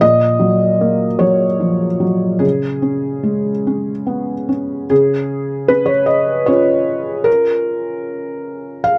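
A felt-muted upright piano plays alone from the start in this short, intimate and reflective piece of neoclassical minimalist piano, moving in a loose, rubato three-beat lilt. Its tone is soft, mellow and vintage, sitting up front in a light reverb and spanning from low Bb2 to F5. A second section begins at 4.9 seconds, and the brief passage is cut from a longer piece.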